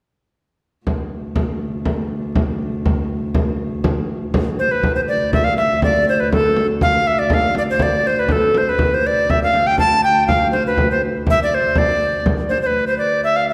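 A medieval dance in 2/4 with an ancient, mysterious mood, this excerpt opens at 0.9 s with a warm, bowed viola da gamba holding a low drone under a deep frame drum struck with soft hands and placed up front. At 4.6 s a bright, reedy tenor recorder takes the melody, its tongued, chiffy wooden tone sitting forward over the intimate, ringing gamba. A wet reverb casts the whole in the spacious resonance of a church or concert hall.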